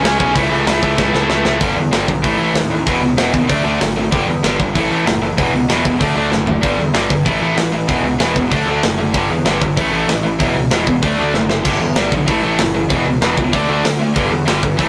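Energetic and upbeat, this punk rock excerpt charges along at 191 BPM in a straight 4/4. A bright, double-tracked distorted guitar riff sits up front, cycling through G, A5, E5 and D over a growly fuzz bass. A tight metal drum kit with bright cymbals and a medium-tuned snare drops in short fills at 1.0, 6.3 and 11.3 seconds, all captured in a rough rehearsal-room sound with light reverb and tube saturation.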